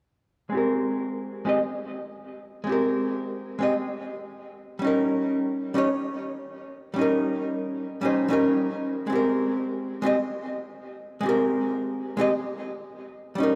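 Soaked in a long, wet plate reverb, this dreamy chillout cut from a longer piece drifts at 112 BPM in Ab major, tuned to A4 = 437 Hz. A lone electric archtop guitar enters at 0.5 s: dark, clean and hollow-bodied, it sits up front, its picked accompaniment softened by a low-pass filter and trailed by a diffuse ambient delay. The relaxed, warm mood rests on a gentle sway between Abmaj9 and Eb7, with a fresh passage beginning at 8.7 s and carrying the guitar through to 13.6 s.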